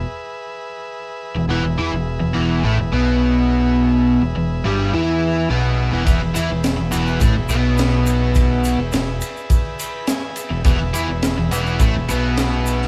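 A bright, double-tracked overdriven electric guitar riff comes in up front at 1.4 seconds over a buzzy combo organ holding sustained chords with light vibrato and a growling picked electric bass, in a raw, swaggering garage rock excerpt at 105 BPM in E major. At 6.1 seconds a crunchy breakbeat drum kit arrives with a punchy kick, a high-tuned snare and dark cymbals, along with a grainy egg shaker in the background. The transistor organ slips in a fill at 9.5 seconds, and the whole band sounds like it is playing live together in a small room.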